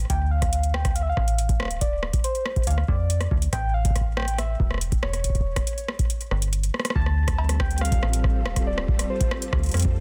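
A metallic FM bass with a fast, decaying attack anchors this intricate, glitchy IDM excerpt in D minor at 140 BPM, joined by an overdriven deep electronic kick that drops out between 6.1 and 7.0 seconds, an overdriven analog drum machine with metallic hats, cowbell and rim click through delay, a round, keys-like struck synth lead treated with chorus, tremolo, phaser and digital delay, and, from 7.0 seconds, a silky vintage string machine with ensemble chorus, all moving from Dm to A7 to Dm7 in a dry, dense, heavily limited mix.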